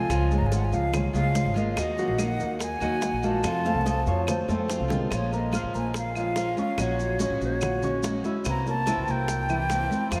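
A sultry Cuban son and guajira cut in Bb minor at 144 BPM opens with an airy silver concert flute singing the tongued, vibrato-laden melody over a boxy picked archtop guitar, dark baby grand piano arpeggios and a pizzicato upright bass sitting woody and up front. From 0.1 seconds the percussion joins: thick-skinned congas and claves in the background, tight bongos played very quietly, and grainy maracas. A fingerpicked flamenco guitar adds a warm second line from 3.7 to 5.1 seconds as a drum fill closes the first section, all of it bathed in a vast, echoing cathedral reverb.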